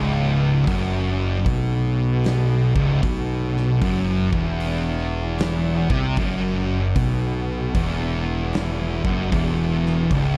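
A swing on the eighth notes gives this slow 4/4 stoner and doom metal passage a lurching, brooding gait, and it is cut from a longer piece. Two thick fuzz guitars play the riff from the start, one picked and up front while its distorted twin sits in the background, moving from a C#7sus4 chord to Esus2 at 3.8 seconds. A fingered electric bass holds down the low end with a bright, growly overdriven tone that sits up front. The big acoustic drum kit joins at 0.7 seconds, its punchy kick, medium-tuned snare and hi-hat sounding smooth and dark in a big room with a rolled-off top. Light reverb and a warm, dark production give the whole sludgy riff a dense, smoky weight.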